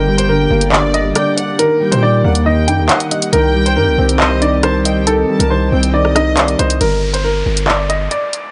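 Dark and menacing, this half-time drill hip hop excerpt at 138 BPM in G harmonic minor pairs a woody, brilliant upright piano melody, its action noise audible, with a felt-muted upright piano accompaniment, a distant gut-string violin section through tape echo, and a hollow, airy pad with chorus, all over a saturated, aggressive 808-style bass and an up-front electronic drill kit of bright hi-hats, handclaps and rim clicks that enters at 0.2 s, before the muted piano, violins and pad drop out at 6.8 s as a downlifter sweeps in on the returning Gm chord.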